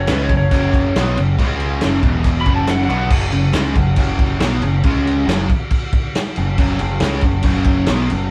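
A slide guitar with fingerpicks opens this swaggering, raw garage rock excerpt, taking a slightly broken-up solo that ends at 3.1 seconds, over a bright, double-tracked fuzz guitar riff and a growling, overdriven picked bass. Driving a straight 138 BPM in 4/4, an up-front vintage kit with a punchy kick, medium-tuned snare and crash plays over very quiet, crisp group handclaps. The band sounds caught live in one stone room with moderate reverb, on cassette tape, and the guitar riff, bass and drums carry on after the solo stops.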